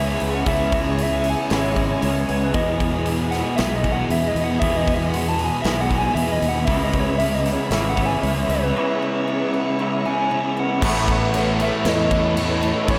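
A straight 4/4 pulse from a big rock drum kit with bright cymbals, entering at 0.2 s, drives this dreamy, hazy shoegaze and dream pop excerpt, where a round, warbling FM synth lead carries the melody with chorus, tremolo and slapback echo over a thick fuzz guitar riff with lush chorus, a slightly broken-up, lo-fi electric guitar riff with reverse reverb, a growly, punchy fingered bass, a shimmering, very quiet twelve-string acoustic guitar picking arpeggios and background sawtooth string-machine violas holding sustained chords, while a tight, double-tracked distorted guitar joins at 10.8 s as the harmony moves to Aadd9 in a small, lightly reverberant room.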